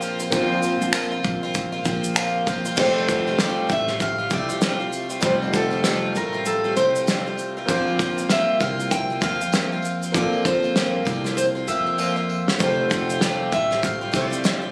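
Recorded on a phone in a room with a club-like reverb, this carefree, heartfelt acoustic pop excerpt in F major moves at 98 BPM with a 16th-note swing, as a full-bodied picked steel-string guitar carries the melody through plate reverb and delay over a shimmering, octave-doubled twelve-string guitar, a clear concert grand piano in the background, a woody pizzicato upright bass, a jingly, very quiet tambourine and a loose indie drum kit with a fat snare, punchy kick, crash, finger snaps and shaker that plays a fill at 12.0 seconds, as the chords shift between Bbsus2 and Fadd9.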